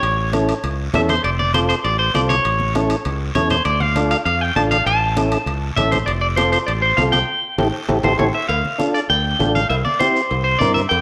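A straight, danceable cumbia groove is carried by damped, low-tuned congas, a raspy guiro and ringing, saturated timbales and cowbell, all sitting in the background beneath a warm, up-front fingered electric bass. A bright, twangy clean electric guitar takes the passionate melody, coated in spring reverb and slapback echo, while a mellow combo organ with heavy vibrato fills in the accompaniment from 0.3 s. A drum fill and band accent at 7.3 s lead into a new section at 8.5 s, all within a moderately reverberant large studio space.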